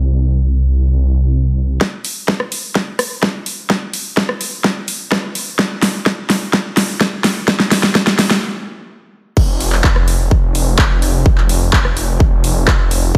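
Set in light reverb and a digital ambience, this short cut of euphoric, triumphant festival progressive house opens with a thick, lush detuned saw bass, chorused and pumping against the sidechain. At 1.8 seconds a punchy, overdriven electronic kick and a big-room dance kit with a huge snare, metallic hats, handclaps, rim clicks and crash cymbals launch a build-up driven by a long drum fill, which breaks into a stop at 8.4 seconds. The bass then returns up front for the drop at 9.4 seconds, with the overdriven kick and kit playing alongside it.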